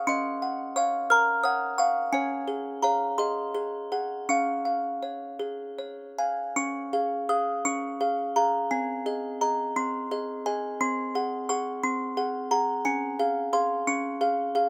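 A gently swaying 6/8 lilt at 57 beats per minute, counted in dotted quarters and stretched with rubato, carries this tender, dreamy classical lullaby in D-flat major, heard as a passage cut from a longer piece. A solo music box plays throughout, its delicate, tinkling plucked tones sounding bright and slightly out of tune, with the small-box character placed up front in light reverb and ranging from C4 to F6. The harmony moves through D-flat, A-flat seventh and related inversions, and a second, contrasting phrase begins at 6.6 seconds before settling back on D-flat at 12.8 seconds.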